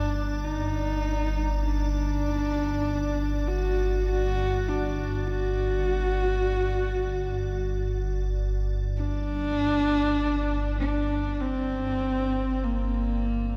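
Drenched in a vast, echoing cathedral reverb, this ominous dark ambient drone excerpt at 49 BPM sets a husky, intimate horsehead fiddle melody with delay up front over a deep, rumbling phased drone, while an icy, crystalline glass pad with chorus sits bright in the background and fades out across the full 13.6 seconds.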